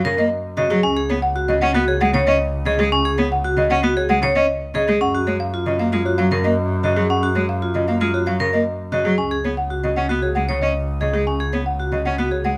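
A woody, rustic folk marimba carries the melody through this meditative yet urgent fragment of minimalist classical pattern music at 115 BPM in F# major, while a bright, metallic vibraphone with fast motor vibrato ripples arpeggios from 0.1 seconds, a focused, up-front single cello bows the accompaniment, and a clear bowed double bass anchors the low end over chords moving from F# through C#sus4 and F#maj7, all set in light reverb.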